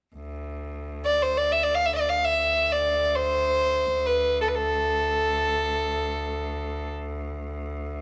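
A bright, biting cello sustains a low D drone with light vibrato from 0.2 s, setting up a melancholic, hypnotic Turkish makam piece in free time, D makam nikriz. At 1.1 s a violin enters up front, bowed sul tasto with a soft attack, its pure, floating, warm tone carrying the melody between A4 and F5. A small room adds moderate reverb to this brief passage from a longer work.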